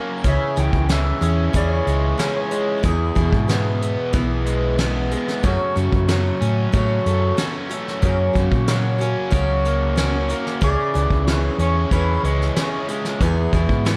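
Folk rock and heartland rock with a hopeful, open-road mood at 93 BPM in 4/4: a boxy picked archtop acoustic guitar with audible finger squeak and a dark, overdriven, double-tracked electric guitar riff run throughout over a round, punchy hollow-body bass sitting up front and a brushed drum kit with a fat snare and tight kick, while a twangy clean lap steel adds slide lines with volume swells from 0.3 to 4.1 seconds and again at 10.6 seconds, the harmony moving through C#m, E, F#m and F# in a short, lightly reverberant fragment of a longer piece.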